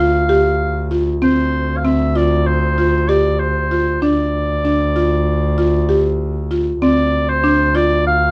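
Contemporary chamber music in an uneven 9/8, this brief, urgent yet pensive fragment sets a roomy, classical-style solo oboe melody over woody, buzzing marimba arpeggios struck with medium hard mallets and a rich, bowed double bass with gut-string tone and light vibrato holding a single low D, all captured by close, detailed microphones with light reverb as the harmony moves from a suspended chord over D to D minor and, at 6.8 seconds, to D minor seventh.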